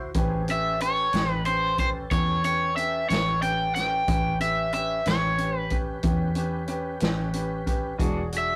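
A laid-back, rollicking slow blues in 12/8, cut from a longer piece, opens on brilliant concert grand piano, a very quiet, lightly overdriven tonewheel organ with chorus vibrato and rotary speaker, and a dark, round, foam-muted fingered bass, soon joined by a punchy vintage drum kit with a rolled-off top and, at 0.5 s, an up-front, crunchy overdriven guitar melody, while a clean, picked electric guitar with harmonic tremolo slips in briefly at 8.0 s as the A9 harmony gives way to E9, the whole captured in a rough rehearsal-room sound with light reverb and warm saturation.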